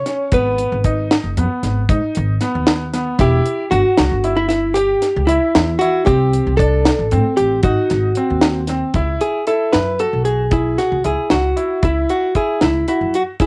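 Progressive instrumental band music in 11/8 at 229 BPM (counted in eighths), this brooding, tense passage is cut from a longer piece, moving through G#m, Emadd9, Csus2 and G#7 before settling into C# minor at 9.0 s. Up front, a dark, clean, compressed hollow-body electric jazz guitar picks the melody, while a clear, worn grand piano plays arpeggios beneath it, both carrying a cassette tape coloring. A dry, smooth reggae drum kit with a high-tuned snare and tight kick, along with a woody, steel-strung pizzicato upright bass entering at 0.3 s, sit forward in a lightly reverberant home recording made on cassette.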